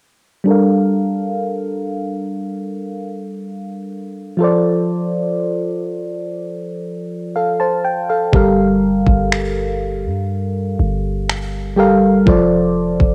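A mellow, round FM electric piano with chorus and cassette-tape coloring opens at 0.4 s, moving through a filter sweep over Gm7 and Dm7/F chords, before a deep, boomy 808-style bass and an up-front trap kit of finger snaps and knocking kick with vintage 12-bit sampler grit enter at 8.3 s, lending this late-night contemporary R&B fragment a longing mood inside light digital ambience.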